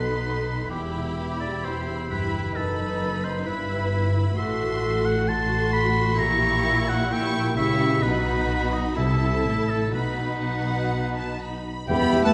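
Set in a reverberant recital hall, this urgent, dramatic excerpt from a fast romantic orchestral movement moves at 121-134 BPM in 4/4 with rubato, as a focused chamber violin section carries the melody over an up-front, clear oboe and a lush symphonic violin section on second lines, smooth, even violas in accompaniment, ringing fingerpicked harp arpeggios in the background, and expressive cellos and double basses on the bass, until at 11.9 s a dark, distant clarinet, an airy flute ensemble, mellow French horns and smooth-topped trombones holding chords, dark trumpet stabs and a very quiet tuba join for the final moments.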